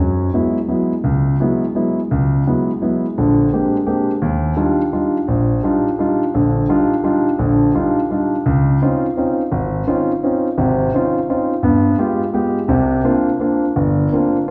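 A warm grand piano plays alone and up front in this short, spiritual, searching jazz fragment in three-four time with swung eighths, moving through extended chords from Gb9sus4 and Bb13 to Ebmaj9, Dbmaj9 and G7b9. It arrives on C9sus4 at 12.7 seconds, with the playing spanning G1 to G4. A wet recital-hall reverb with a 1.6-second decay lets the harmonies ring in the resonant space of a church or concert hall.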